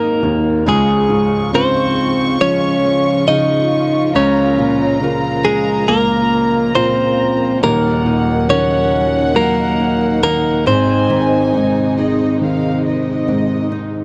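A slow, straight 4/4 pulse at 69 BPM carries this tender, heartfelt pop ballad in Db major, cut from a longer piece. Up front, a bright, twangy clean electric guitar, recorded direct and compressed, picks the melody until 13.7 s. Beneath it, a felt-muted upright piano plays soft, mellow, intimate accompaniment with audible action noise, while a small, fingerpicked nylon-string guitar adds arpeggios in the background through a tape echo. A lush, woody string section holds sustained chords further back, and a violin section with a reedy, gut-string tone and light vibrato traces a smooth second line up high. The harmony moves from Ab to Db, then Bbm/Db and Ebm7 before returning to Ab, heard in a dry, close 1970s-style studio sound with little reverb.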